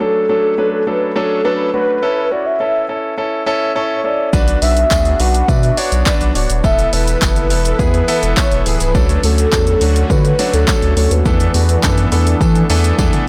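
A velvety, chorused synth lead with tape echo sings a bittersweet melody over clear, intimate concert grand piano pumping against the sidechain, until at 4.3 seconds this driving dance-pop cut opens into a punchy, overdriven analog drum machine of kick, handclaps, hi-hat, shaker and toms, a thick saturated sub bass up front, a soft airy supersaw holding chords in the background and a faint, distant tambourine, all in a dry, blown-out mix that closes on a grand piano fill from 11.8 seconds and a drum fill at 13.0 seconds.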